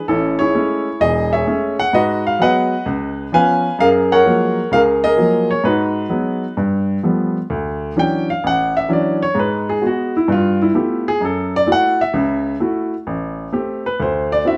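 A warm, natural baby grand piano sits up front in a moderate studio reverb for this sophisticated solo jazz excerpt at 129 BPM in swung 4/4, moving through extended chords in F# major from 0.0 s before shifting to D major at 7.5 s, where the piano takes a solo over Dmaj9, G13 and D9 harmonies.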